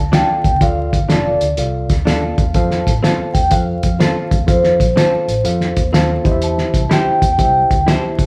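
Joyful, danceable 1960s-style soul at 124 BPM with a swung feel in F major, this short excerpt sets an airy, ringing soft-mallet vibraphone melody with slow motor vibrato over a dark, round foam-muted fingered bass, a mellow tine electric piano that drops in a fill at 1.8 seconds, clean compressed guitar stabs tucked in the background, and a muffled, gritty cloth-damped drum kit with a fat snare and tight kick up front, all played live in one room with moderate studio reverb and vinyl crackle as the chords move from Dm to F to C.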